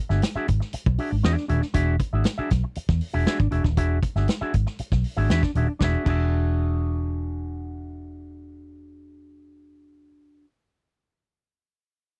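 A dark, round muted fingered bass sits up front beneath a clean, twangy guitar run through an envelope filter and a gritty, saturated vintage drum kit with a tight kick that drops out at 6.2 s, giving this dry, close 1970s-style funk excerpt on an E9 chord an energetic, strutting feel.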